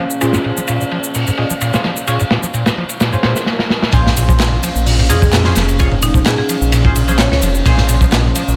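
A moody analog pad on a Bbm9 chord and a squelchy, overdriven acid bass riff open this raw, funky breakbeat cut in Bb minor at 129 BPM, soon joined by a layered garage kit of handclaps, ride and shaker, a nasal, band-passed chord stab with phaser and dub echo under a filter sweep, and a crunchy, up-front breakbeat kit with a tight kick and dark, rolled-off cymbals, before a drum fill and a very quiet electronic swell and impact lead into the drop at 3.9 seconds, where a thick, swirling detuned saw bass arrives and a woody, hard-mallet marimba with lo-fi radio grit and echo briefly surfaces in the background from 5.1 seconds, all within a small room.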